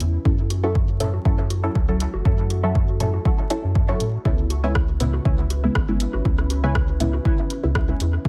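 Nocturnal and meditative, this short cut from a longer dub techno track rides a gently swung 4/4 groove steeped in echo and vinyl crackle. A layered deep house kit of hi-hat and rim click sent into dub echo plays from the start, and a punchy, up-front electronic kick arrives at 0.3 seconds, while analog, tape-tinged electronic bongos and toms sit in the background with their own pumping and echo. Underneath, a soft, round sub bass built from triangle and square waves holds the low end, pumping against the kick. A muted, detuned sawtooth chord stab carries the harmony from F#m7 to C#m7, its filter pluck swept throughout and colored by phaser, cassette tape and dub echo, and a second, evolving stab with chorus plays a higher riff from 0.6 seconds. Behind it all, a moody, warbling vintage pad with a sub octave and slow attack sustains chords in the background, bathed in chorus and its own reverb.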